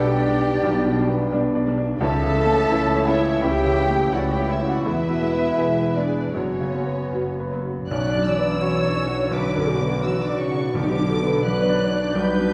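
A wet, roomy scoring-stage sound, heard from further back in the hall, frames this moving, sorrowful fragment of a cinematic orchestral score, cut from a longer piece and unfolding in a rubato 4/4. Dark, woody violins carry the melody high above the ensemble with lush vibrato, while a second violin line sits closer and smoother in the background, joined by the warm, soft-attacked violas, all bowed sul tasto. An up-front, intimate baby grand piano, its action noise audible, provides the clearest voice in the accompaniment, underpinned by dark cellos and a warm double bass section. An airy, expressive flute group, a distant mellow clarinet and a mellow French horn section add inner lines and sustained chords before falling away around 7.5 seconds, as the harmony moves from G over B toward a suspended F-sharp chord. In the closing passage, built on a B minor added-ninth chord, a very quiet timpani struck with hard mallets enters at 10.7 seconds, just as the G over B harmony returns.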